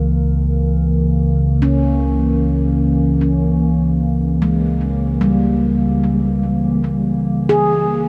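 A warbly, nostalgic tape-like pad holds sustained chords, with chorus and its own reverb, through this serene ambient fragment, over a round, deep analog bass; from 1.6 s a mellow, ringing handpan adds delayed arpeggios, and the whole is set in a huge, wet reverb with a cassette-tape character.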